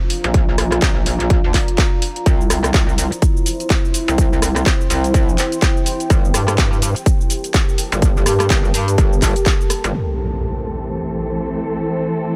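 A deep, detuned sawtooth pad with chorus and its own reverb opens this swaggering, bouncy bass house excerpt at 125 BPM in A phrygian, pumping against a punchy, overdriven kick and a swung garage kit of handclaps, rim clicks, shaker and low-passed hats heard in a small room. Up front, a metallic, distorted FM wobble bass rides between G1 and G2 over chords moving from Bb through C to Gmadd9. As the kick and bass fall away, an electronic impact hits at 9.9 s and a dark, lush bowed string section enters on Am, its vibrato shaded by a filter sweep, all set in light reverb.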